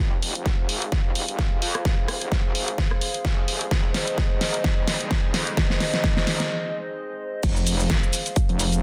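A moody, detuned analog pad and a metallic, saturated wobble bass open this bouncy, swaggering bass house cut in F minor at 129 BPM with a 16th-note swing, joined at 0.2 seconds by an up-front big-room kit with a huge, soft-clipped snare and, at 0.5 seconds, a punchy layered kick, with the pad and bass riding sidechain pumping through a build-up with a drum fill, a short break at 6.5 seconds and a drop at 7.4 seconds, set in light digital ambience under a dense, heavily limited master.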